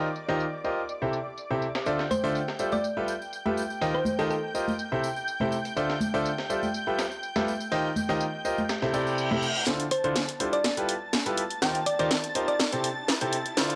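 A straight 4/4 groove at 123 BPM drives this energetic, soulful piano house excerpt, with a gritty, sampler-style breakbeat kit of hats, high-tuned snare and tambourine pumping under filters from 0.2 s alongside small-room congas and tambourine, before an up-front house kit with a cracking snare and a very quiet, punchy electronic kick take over at 9.7 s for a build-up and drum fill. A brilliant concert grand with deep bass carries the riff over a silky, detuned sawtooth string pad that pumps and sweeps through its filter as chords cycle from Eb69 through C6, Dm9 and G13. A round, tine-like FM pluck with a dark, cassette-tinged chorus plays melody in two short spots, while a reverse cymbal and riser sit in the background, all set in light reverb with a dry, hardware grit.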